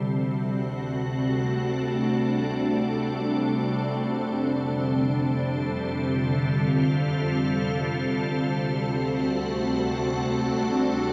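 A soft, organ-like pad sits up front from the opening, its pure, full-bodied chords shimmering with ensemble chorus and built-in reverb, while a calm, sine-toned drone sustains beneath and a bright, lush cello section fades in far in the background on the bass line. This reflective, spacious ambient excerpt drifts in free time over 11.1 seconds, the harmony moving from D7 to F at 4.2 seconds and back to D7 at 8.4 seconds. A moderate plate reverb lends the whole passage a gentle, airy depth.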